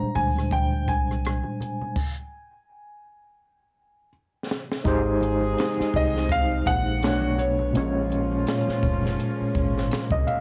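An overdriven tine electric piano stands out from the start, its barky, gritty tone pulsing with medium tremolo through a combo amp and a cassette-tape haze, carrying the accompaniment in this sensual, smooth neo-soul and R&B excerpt in Ab major at 83 BPM with a gentle 16th-note swing. Above it, an intimate concert grand piano plays the melody with audible action noise and an analog delay until 8.4 seconds. A deep dub fingered electric bass, round and punchy with tube saturation, anchors the low end, while a compact cocktail drum kit with a high-tuned snare, punchy kick, rim clicks, hi-hat and crash enters at 0.2 seconds, its dark, rolled-off top softened further by cassette tape, and very quiet low-tuned congas with thick, damped skins join underneath. After a Bb13 chord, the band hits a stop at 2.0 seconds, and a drum fill leads into a new section at 4.8 seconds, where a very quiet, bowed string section adds sustained sul tasto chords and a mellow, vintage horn section punctuates with octave-doubled stabs over Abmaj7, Bm9 and Bbm7 harmonies. 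The whole home cassette recording sits in a light reverb.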